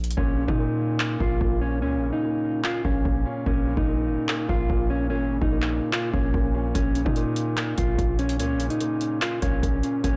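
The recording sounds blown-out and overdriven, set in a digital ambience that gives this short trap excerpt a menacing, dark edge. It moves at 146 BPM in 4/4 with a half-time feel, sitting on a B-flat minor chord in B-flat minor. A booming analog drum machine sits up front with a deep kick, handclaps and metallic hi-hats, re-recorded in a small room. The hi-hats drop out at 0.2 seconds and return at 6.8 seconds. Beneath it, a punchy, heavy 808-style bass with a sine body, a noise layer and a fast attack decays between A-flat 1 and B-flat 2. A clean, fingered electric guitar carries the melody up front from 0.2 seconds, filtered and coloured with spring reverb and delay, while a mellow baby grand piano with long sustain fills in low-pass-filtered accompaniment.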